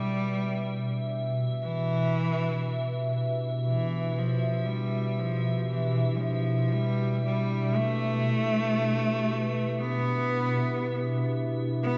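A dreamy, reverb-soaked hall wash opens this ominous dark ambient drone in E phrygian, unfolding in free time as a cut from a longer piece. A deep, rumbling drone on B2 sits up front with a phaser, alongside a clear, boxy bowed cello carrying the melody with vibrato through analog delay, while a moody analog pad fades in across the full 12.0 seconds beneath an icy, crystalline glass pad shimmering with chorus high above. The whole passage rests on an Em chord, suspended and brooding.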